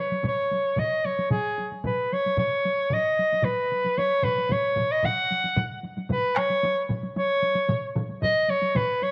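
A warm, vintage soprano saxophone carries the melody up front from 0.0 to 9.1 seconds, singing with vibrato in a classical style over this driving, ceremonial Japanese traditional taiko piece at 113 BPM in straight 4/4, set in C# suspended pentatonic. Beneath it, three taiko ensembles enter by 0.2 seconds: one struck with hard sticks and miked close and dry, one with heavy sticks in a small room, and a third with heavy sticks, also close and dry but very quiet. A wet echo-chamber reverb with a 1.7-second tail fills out this brief cut from a longer piece.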